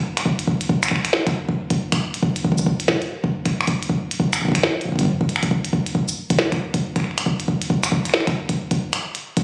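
IDM with a glitchy, eerie mood and a swung 16th-note feel, this fragment of a longer piece pairs an up-front deep electronic kick with a glitchy drum kit of cabasa, finger snaps, clicky hats and a tiny snare, both re-recorded in a small room and captured on a phone under a moderate plate reverb.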